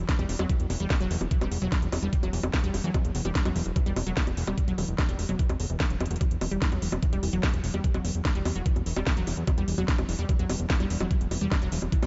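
A dark, warm production with light reverb carries this intense, alien psychedelic trance excerpt at 147 BPM in E minor, where a fat, saturated, detuned analog bass sits up front beneath a lush, punchy unison pluck riff with sidechain pumping and dub echo, driven by a knocking electronic kick and a garage kit of bongos, metallic hats and cracking snare, with a drum fill at 6.0 seconds.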